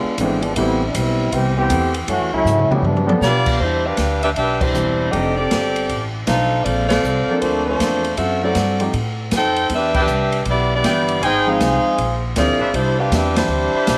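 Big band swing at 158 BPM in 4/4, with a joyful, energetic drive and a moderate swing on the eighth notes, tuned slightly low to A4 = 436 Hz. A dark, vintage-toned trombone section opens with vibrato and a soft attack, carrying the line alone over a woody pizzicato upright bass, a polished grand piano with long sustain set in the background, and an airy acoustic drum kit with dark cymbals, a medium-tuned snare and a boomy kick. A drum fill leads into the saxophone section, which enters at 3.2 seconds and takes the melody in C major, sitting up front with vibrato, a soft attack and a slapback echo. The harmony moves through rich extended chords such as Cmaj9, F13 and Bbmaj9, punctuated by accents from the whole band. A tight trumpet section joins with stabs at 9.9 seconds, sitting in the background with light vibrato and a warm glow, as the passage continues until it is cut off at 14.0 seconds. 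The whole sound sits in a moderate spring reverb that gives it a studio feel.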